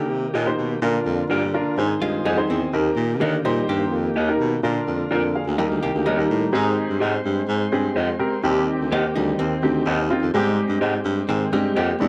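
An uplifting soul groove opens with a clear, woody upright piano, a slightly detuned and worn-sounding instrument set up front with plate reverb, alongside a baritone saxophone carrying the bass line with a punchy tone, light vibrato and a smooth top. Beneath them, a thick tonewheel organ holds sustained chords in the background through a slow rotary speaker and light overdrive, while a clean, compressed hollow-body jazz guitar plays a dark, picked riff. From 0.3 seconds an electric guitar through a small old amp adds slightly broken-up, lo-fi stabs, also bathed in plate reverb. The piano drops in short fills along the way, and at 6.5 seconds the harmony shifts to richer major-seventh and sixth colours as a tight horn section enters with a second line in octaves, sounding distant and roomy. The overall production is dark and warm with light reverb, and the passage is cut from a longer piece.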